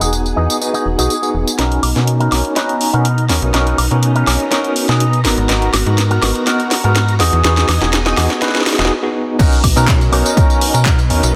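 Sunny and funky, this clip of filtered disco house moves at 123 BPM in B major, with a barky, overdriven tine electric piano carrying fast tremolo, phaser and 12-bit sampler grit over a snappy, metallic-attack FM bass, while a swirling, sawtooth string machine and a dark, clean envelope-filtered guitar riff sit in the background. A layered house kit with a cracking snare, bright hats, handclaps, tambourine, woodblock and crash drives a long build-up from 1.6 seconds, where a drum fill and filter sweep run over chords moving from Bmaj7 through G#m9 to Emaj9, with the melodic parts pumping against the beat. After a short break at 8.9 seconds, the drop lands at 9.4 seconds as a punchy analog kick joins, all under light reverb.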